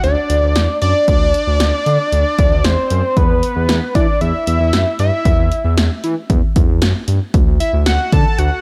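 A punchy analog drum machine drives this short synth-pop excerpt at 115 BPM in a straight 4/4, its kick and snare sitting up front with the snap of a small room, under a wistful, nostalgic mood. A smooth, evolving synth bass with sawtooth and square-wave tones and vibrato holds the low end from D2 to E3, while a fat, detuned analog lead with a sub octave and a mellow phaser sings the melody between B4 and A5. Light reverb wraps the mix, and the harmony moves from an open start to E5 at 3.2 seconds and D at 7.3 seconds.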